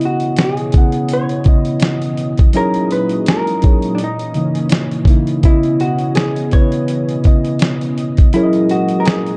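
This reflective, melancholic lo-fi hip hop excerpt opens with every part playing at once: a dusty, sampler-style drum kit, a reed electric piano, a hollow-body jazz guitar and a lush pad, all carrying through to the cut at 9.4 seconds. The drums sit loudest and up front, with a thumpy kick, a fat snare and hi-hat swung lightly on the sixteenths, their compressed sound roughened by 12-bit sampler grit and the small room they were re-recorded in. The reedy electric piano, also up front, plays clean accompaniment through its built-in speakers, colored by cassette tape. Alongside it, the dark, picked jazz guitar carries the melody in a compact middle register, while the thick, airy pad of detuned sawtooth and square waves with a noise layer swells in slowly behind everything, softened further by chorus. The harmony moves through C#m9, F#13 and C#m69 across two matching passages, the second beginning at 5.4 seconds, all framed by light reverb and a dark, warm production.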